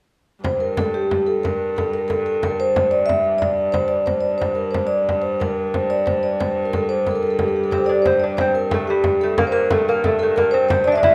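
Set in a moderate recital-hall reverb, this driving, mysterious medieval dance excerpt in 6/8 puts a mellow, ringing vibraphone played with soft mallets up front on the melody, over a distant, biting hurdy-gurdy drone and a close, dry frame drum, with a delicate fingerpicked gut-string lute joining on a second line at 7.7 s.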